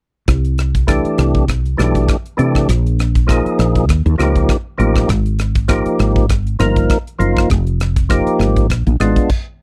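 A dry, close 1970s-style studio sound frames this bright, soaring stretch of electric jazz fusion at 100 BPM in 4/4 with a light 16th-note swing, where a crisp drum kit with punchy kick, hi-hat, crash and rim click and a woody, growly fretless bass with analog chorus enter at 0.3 seconds, a fat, lightly overdriven tonewheel organ with percussive third-harmonic attack and slow rotary speaker joins at 0.9 seconds, and the harmony moves from Cmaj9 through Eb9 and Fm7 to Bb7b9 before a stop at 9.3 seconds.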